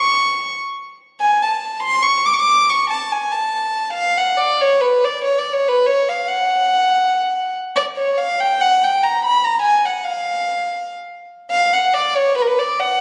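A lone bowed violin sits up front from the first moment, played sul tasto with a soft attack and a pure, floating tone, carrying this bittersweet, restless Balkan folk fragment across a line from A#4 to D6 through a moderate scoring-stage reverb, all captured on a phone in a room alive with club ambience.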